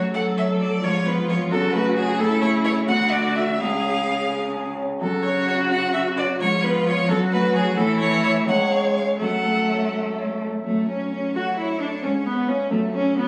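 A focused solo violin with a smooth top and vibrato carries the melody up front in this stormy, urgent classical-period movement for piano quartet, cut from a longer piece and moving in 6/8 with rubato. Beneath it, a full-bodied bowed viola and a polished baby grand piano share the accompaniment, while an expressive cello with a soft attack, vibrato and portamento sings a second line. Captured on a phone in a stone room, the ensemble carries a moderate reverb.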